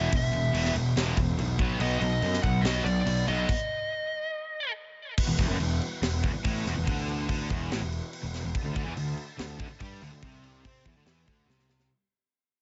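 A straight 143 BPM hard rock drive opens with a tight metal drum kit of bright cymbals and high-tuned snare up front, a round, fuzzed electric bass, two overdriven and distorted riff guitars in the background and a biting lead guitar melody until 4.7 s. Then, after a stop, the music settles into E minor as a gritty overdriven tonewheel organ with slow rotary and chorus vibrato enters at 5.2 s and the heavy cut fades out. A very quiet, double-tracked sludgy guitar joins at 8.6 s before a closing drum fill, all in a small room ambience.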